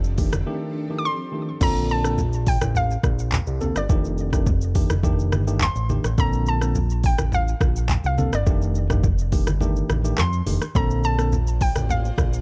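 A dark, warm, dry production carries this sunny, joyful afrobeats excerpt in Bb major at 105 BPM, moving straight in 4/4 between F13 and Bbmaj9 chords. A fat analog bass, thick with detuned sawtooth and square tones and a moving notch, sits up front alongside an electronic afro-pop kit whose deep kick, smooth hi-hats, handclaps, rim clicks, shaker, toms and crash cymbal are pushed through overdrive. Over them, a hollow square pluck carries the melody with a bouncy, decaying attack, a sub octave and a noise layer, its mellow tone treated with chorus and delay. A worn, slightly out-of-tune electric piano with a clean combo-amp tone provides accompaniment, while low-tuned congas struck with hard hands sit in the background. A blurred, granular cloud pad swells in with its own reverb at the opening, lingers through a break that begins at 0.5 seconds, drops away at 1.6 seconds, and returns at 11.4 seconds, shortly after the kick briefly falls silent from 9.6 to 10.8 seconds.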